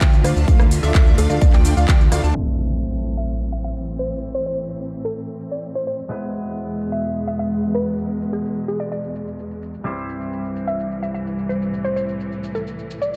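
Powerful and anthemic, this festival progressive house piece in A minor drives at 128 BPM in a straight 4/4, opening mid-drop with a punchy, up-front kick, a fat, wave-folded analog bass, a huge detuned supersaw riff with dub echo, and a bright plucky lead playing arpeggios in the background, with the bass, supersaw and lead all pumping against the sidechain, until the kick drops out at 2.0 seconds. An up-front electronic impact lands at 2.4 seconds as the harmony moves from Dm to Am, E and C, leaving lush bowed symphonic strings under a filter sweep, a woody, round mallet-like pluck melody with chorus and phaser, a clean hollow-body guitar with lush chorus, and a tape-warm house kit of metallic hats, claps, ride, rim clicks and shaker. The mix sits dark under light digital reverb, and the recording is cut from a longer piece.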